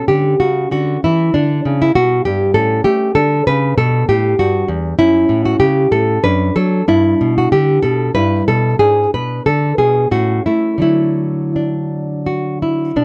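In a flexible, rubato triple metre drifting between 82 and 101 BPM, this baroque-style classical dance in D major unfolds as a short, serene excerpt for solo nylon-string guitar, heard throughout the 13 seconds. The dark, fingerpicked guitar sits up front in a dry, close 1970s-style studio sound with light reverb, its finger squeaks audible as the harmony moves from a rootless A through Gmaj7#11, F#m and a G#dim before settling on D at 10.8 seconds.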